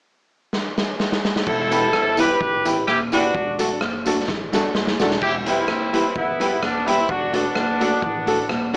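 Mischievous and energetic, this ska excerpt in E minor moves at 128 BPM with a light swing, opening with a gritty, saturated garage drum kit fill at 0.5 seconds. From 1.5 seconds a clear, tight, up-front horn section carries the melody over woody pizzicato upright bass. From 1.7 seconds a dark, clean hollow-body jazz guitar sits in the background, a brilliant, slightly detuned upright piano adds stabs, and a jingly tambourine plays until 5.1 seconds as the chords shift between Em and D/E. Light reverb and a small-speaker sound give the mix a lo-fi character.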